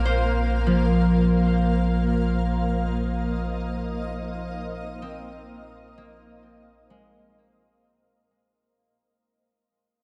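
A dark production steeped in huge ambient reverb frames this serene, peaceful ambient fragment, which is cut from a longer piece and fades out across its first 8.6 seconds. Up front, a bright, blurred granular cloud pad holds a sustained Bbsus2 chord above a deep, ominous rumbling drone in the bass, and both carry their own built-in reverb. A ringing, fingerpicked concert harp plays arpeggios through tape echo, lingering until 9.2 seconds.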